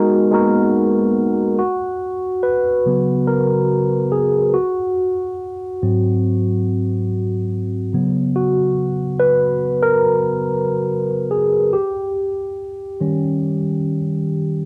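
R&B with a sensual, moody feel, this short solo passage cut from a longer piece features a mellow tine electric piano alone, its clean, direct tone sitting up front and colored by phaser and cassette tape character. After a brief G#m9 opening, the piano takes its solo from 1.6 seconds, moving through C#7sus4, G#7 and on to D#7 by 11.7 seconds. Light reverb and a home-cassette quality lend the whole a close, intimate sound.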